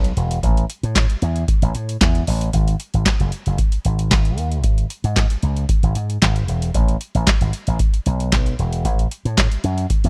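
Funky and late-night, this excerpt of early-eighties boogie funk moves at 114 BPM in a straight 4/4, with a booming analog drum machine's deep kick, tonal snare, metallic hi-hats and handclaps sitting dry and up front beside a bright, punchy slap bass run through an envelope filter, spanning E1 to A2, all wrapped in digital ambience.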